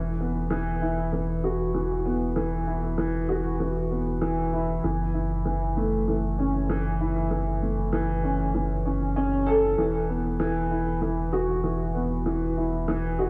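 A straight 4/4 pulse at 97 BPM carries this moving, intimate piece of piano and strings electronica, tuned to A4 = 439 Hz and cut from a longer work. A dark, boxy baby grand piano sits up front, playing a riff between E3 and A4 with short sustain, and lush chorus and delay give it a shimmering trail. Beneath it, a deep, round sine sub bass holds sustained notes between E1 and F#1, with a fast attack and a mellow weight. Both parts play throughout the 13.3 seconds as the harmony moves from Esus2 to F#m7 at 4.8 seconds and back to Esus2 at 9.8 seconds. A moderate plate reverb with a 3.3-second tail soaks the mix in a dreamy haze.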